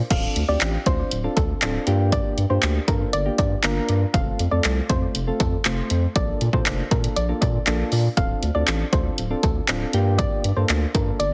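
Summery, upbeat dance-pop drop excerpt in which a punchy analog drum machine, re-recorded in a large room, drives kick, handclaps, hi-hat and crash up front beneath a thick, saturated sub bass, while mellow electric-piano-like synth keys with chorus and a dark, rounded filtered pluck melody carrying chorus and delay all pump to the sidechain over a Dm7–Gm7–F–Bbmaj7 progression, the whole mix bathed in light reverb and squeezed into a heavily compressed, radio-ready sound.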